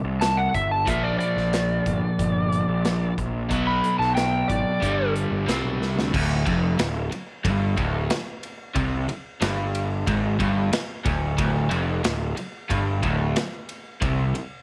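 A light reverb gives this gritty, swaggering clip of blues rock and southern rock a studio-room feel, with the three stringed parts sitting up front. At a straight 91 BPM in 4/4, a bright, scooped, double-tracked electric guitar picks out an overdriven riff from start to finish. Beneath it, a picked electric bass adds a warm, punchy fuzz and overdrive on its low line, while an acoustic rock kit drives things with a punchy kick, a medium-tuned snare, hi-hat, ride and crash. A warm, overdriven slide guitar plays a high melody from 0.2 to 5.1 seconds over power-chord harmony moving through C5, Bb, B5 and G5. A drum fill at 5.8 seconds leads into a new passage on Dm7 that carries the riff, bass and drums to the close of this excerpt from a longer piece.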